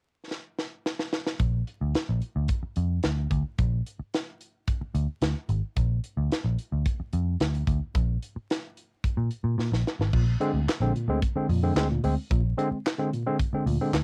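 Recorded at home on cassette with vinyl crackle and little reverb, this short funk cut from a longer piece sounds playful and gritty, with every part placed up front. A crisp fusion drum kit opens with a fill from 0.3 seconds, its airy, polished studio-room sound built on a high-tuned snare, tight kick, hi-hat, crash cymbal and handclaps. At 1.4 seconds a vintage muted picked electric bass enters on a Bb chord, its dark, foam-muted tone round and amped as it grounds the groove in the low register. After another drum fill, the harmony shifts to Bb9 at 10.1 seconds, where a barky tine electric piano arrives with bell-like stabs, played clean through a combo amp and colored by cassette tape. The drums and bass carry on to the end, with the electric piano joining them for the closing stretch.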